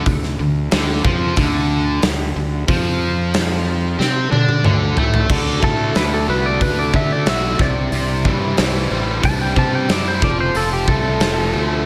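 A big arena sound in a concert hall space carries this swaggering, driving classic rock excerpt at 92 BPM, where a bright, double-tracked distorted electric guitar riff with slapback echo, a growly fuzz bass and a punchy, dark drum kit push through D5 until a drum fill at 4.0 seconds opens a twangy clean lap steel slide melody, also with slapback echo, over a very quiet, shimmering twelve-string acoustic guitar from 5.3 seconds as the chords move through D, Cadd9 and F.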